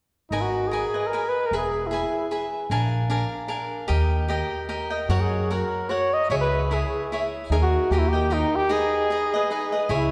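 Heard from further back in a scoring stage, this short cut from a longer mariachi piece is bathed in lush, lingering reverb that gives it a dramatic, passionate sweep. It moves at 150 BPM in 3/4 with a swung lilt, set in G# minor over a progression that opens on G#madd9 and passes through E, A#7 and C#m before resolving back to G#m. A dark-toned trumpet takes the melody in a classical style, singing with vibrato and a smooth top end; it states a brief phrase, falls silent, then returns at 5.1 seconds to carry the line to the close. Underneath, a bright, crisp picked cavaquinho fills in the harmony from start to finish. A growly, woody upright bass, plucked on steel strings, anchors the low end, and the trumpet, cavaquinho and bass all sit up front despite the roomy space.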